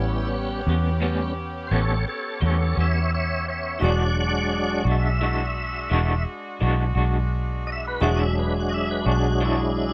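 Led by a lightly overdriven tonewheel organ soloing up front through a slow rotary speaker with chorus vibrato, this gritty, rollicking slow blues in 12/8 at 57 BPM moves from A9 to E9 over a round, foam-muted fingered bass, a woody upright piano with audible action noise in the background, distant roomy horns holding chords, and a slightly broken-up guitar with tremolo entering at 0.7 seconds, all in light reverb.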